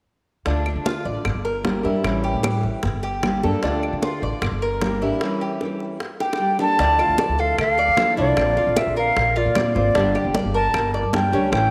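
Latin music in the Cuban son and guajira style, this nostalgic, sultry excerpt moves at 152 BPM in a straight 4/4, set in D harmonic minor before settling into D minor at 6.8 s. From the start a bright, full-bodied nylon-string guitar is fingerpicked in a classical manner beneath a mellow, metallic Cuban tres playing picked arpeggios on double strings. A dark, thumpy upright bass with gut strings anchors the low end, while high-tuned bongos in a live room and ringing congas played with hard hands fill out the rhythm, joined by woody claves in the background. As a drum fill begins at 6.2 s, a reedy concert flute enters up front with an airy, straight, tongued tone carried by tape echo. The harmony moves through Dm, Gm and A7 with an Em6 color, then opens onto Dmadd9 and Bbadd9 in the later section, all held in a moderate plate reverb.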